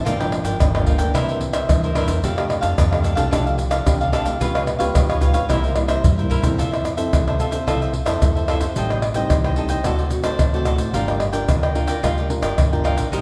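Up-front egg shaker, tight surdo, pandeiro and tamborim drive this joyful, lively samba-and-choro excerpt at 110 BPM, with a drum fill at 5.8 seconds leading the shift from C major to F major at 6.6 seconds, while a crisp picked cavaquinho, a thumb-plucked classical nylon-string guitar and a woody, growly pizzicato upright bass sitting in the background play through rich jazz-tinged chords, all bathed in the lush reverb of a recital hall.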